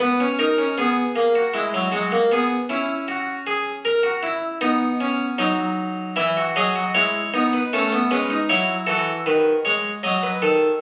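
A bright, plucked Italian-style harpsichord with one set of strings sits up front, playing alone from 0.0 to 10.8 seconds in this stately yet lively baroque-style four-part fugue at 78 BPM in a straight 4/4, tuned to A4 = 439 Hz. Its lines span D#3 to E5 over a steady chord progression that moves from B through E, F#7/C#, A and B7/D#. The sound, captured on a phone in the room, carries a wet studio reverb, and the passage is cut from a longer piece.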